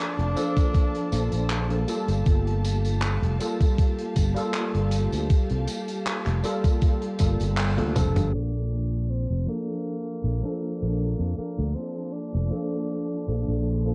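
Muffled cassette haze and a small-room sheen wrap this faded, woozy vaporwave fragment, where a barky, bright tine electric piano with chorus, 12-bit sampler grit and tape echo carries the Bbmaj7 and Gm9 harmony up front, over a growly, punchy fretless bass and lush bowed strings that sit filtered in the background. A thumpy sampler-style electronic kick drives the groove from 0.6 until 8.1 seconds, alongside a loose, rolled-off indie kit of handclaps, hi-hat, tambourine and toms that enters just before it, with a band accent and a drum fill leading into the second section. A breathy, subtone tenor saxophone with scooped notes and tape echo offers a brief phrase that ends at 1.8 seconds, then returns at 8.3 seconds as a filter sweep runs to the end.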